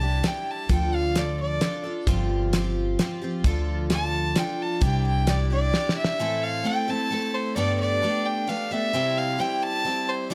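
Folk rock with a heartland rock lean at 131 BPM in 3/4, this reflective, dusty fragment opens with a nasal, reedy bowed fiddle solo over a shimmering, octave-doubled picked twelve-string acoustic guitar, a woody, thumpy pizzicato upright bass and a dry 70s drum kit with a fat snare and tight kick. The bass drops out as a drum fill at 5.7 seconds closes the first section, after which the drums fall away too and the fiddle and guitar carry on alone through the Am, Gadd9 and C changes. The sound is close and up front, with light reverb.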